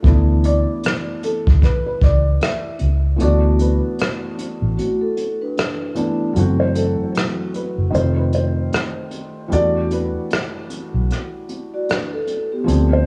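Cosy and dreamy, this lo-fi hip hop excerpt at 76 BPM in D major sets a felt-muted upright piano with audible action noise and cassette tape colour over a round, dark fingered electric bass and a brushed vintage kit with a tight kick, hi-hat and rim click, while a second felt-muted piano carries the melody through analog delay from 0.5 seconds and a soft-mallet vibraphone rings in briefly at 4.8 seconds, all wrapped in warbling old tape and light studio reverb.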